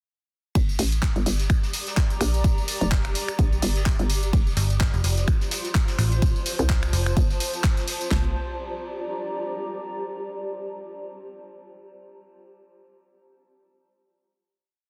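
A swaggering, gritty bass house piece opens straight into its drop at 0.6 seconds: a punchy four-on-the-floor kick, cracking snare, claps and toms sit up front, layered with tape-tinged snaps, tambourine and hi-hats, while a hollow, bouncy FM bass chops out short phrases with tube saturation and sidechain pumping. In the background, a dark, brushed acoustic breakbeat loops with edits, and from 1.4 seconds a cloudy, blurred granular pad drifts in with slowly shifting chords. A metallic, digital FM bass answers the first bass between 4.6 and 7.2 seconds, and the pad sustains over the final chord to the end of this short, dense, heavily limited track.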